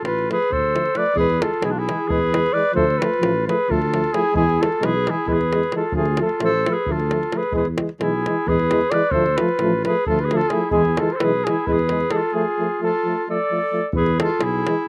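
A fast, straight pulse in 7/8 drives this short Balkan brass band passage at 263 BPM in eighths, restless and virtuosic in mood and cut from a longer piece. A mellow flugelhorn with a smooth top carries the melody up front, while a clear, distant clarinet traces a second line beneath it with slapback echo. A dark, close-miked tuba anchors the bass, and a tight davul keeps the percussion close and acoustic. A soft-attacked euphonium and a trombone with light vibrato fill in the accompaniment, both with slapback echo. The harmony swings between Dm and E throughout, and a break arrives at 12.3 seconds before the E chord returns at 13.9 seconds, all heard in a dry outdoor setting.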